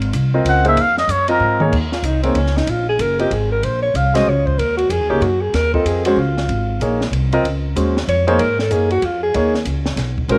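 Modal jazz in a swinging three, hypnotic and intense and cut from a longer piece: a woody, thumpy pizzicato upright bass and a dark, compact cocktail drum kit with a punchy kick play throughout under warm grand piano, while a veiled cup-muted trumpet solos briefly and, after a drum fill, a breathy, up-front alto saxophone with subtone and vibrato takes the solo from 1.7 seconds.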